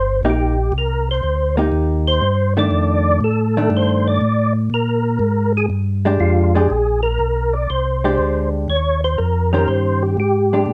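Greasy, soulful swing jazz at 121 BPM in Bb mixolydian, this short cut features a percussive tonewheel organ carrying the melody with third-harmonic percussion and chorus vibrato through a slow rotary speaker, soloing over the first 6.7 seconds, while a second, round organ with audible key click holds down the bass and a dark, compressed hollow-body electric guitar joins at 0.2 seconds with picked accompaniment, all sitting up front in a light reverb as the chords move from Cm7 through F13 and Bb6 to Bb13 and Eb13.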